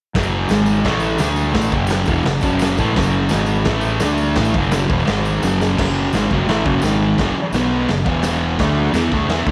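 A moderate echo-chamber reverb and a small-room ambience give this short excerpt from a longer garage rock piece a gritty sound with a swaggering mood in a straight 4/4. Up front, a thick, double-tracked fuzz guitar plays a dark, distorted, picked riff over power chords and minor chords. Beneath it, a fingered electric bass adds an overdriven, fuzzy low end. A raw acoustic drum kit with a punchy kick, a medium-tuned snare and crash cymbal sounds saturated and rolled-off at the top, heard through a bright stone room. A jingly tambourine sits distant in the background, as if in a large room, and stops at 9.0 seconds. A drum fill from 5.4 to 5.8 seconds leads into a second section where the chord movement shifts.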